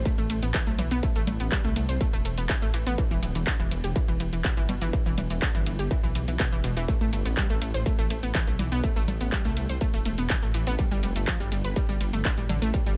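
A distorted electronic kick drum sits up front in this cut from a longer melodic techno piece, driving a straight 4/4 at 123 BPM in A minor from 0.1 to 12.8 seconds. Beneath it, a dark detuned saw bass rumbles between D1 and C2, its saturated unison tone beating and sustained, and it pumps with sidechain compression. An analog pluck plays arpeggios from B2 to C5, its round, bright filter-plucked tone thickened with chorus, trailed by dub echo and also pumping with sidechain. A techno drum kit adds congas, handclaps, warm hi-hats and ride cymbal, with sidechain pumping on the hats, percussion and cymbals, and both drum parts carry the sound of a large room. The chords move from Amadd9 to Em, Asus2 and Gsus2 under a driving, cinematic mood, and the mix stays dry, with little reverb.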